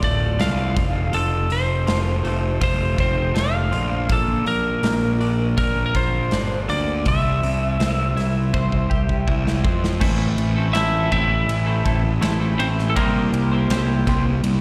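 A straight 4/4 pulse at 81 BPM drives this cathartic, angsty quiet-loud alternative rock clip, cut from a longer piece, where a dark, slightly broken-up lead guitar carries the melody with slapback and tape echo over bright, twangy twelve-string arpeggios touched by subtle chorus, an up-front fuzz-overdriven picked bass, and a big acoustic drum kit with a punchy kick and bright cymbals, all heard as a live gig through the venue's PA in small-room and recital-hall ambience, as chords move from Dm through F, Bb and C before a drum fill at 8.5 seconds leads into a new section on Am and C7 at 10.0 seconds.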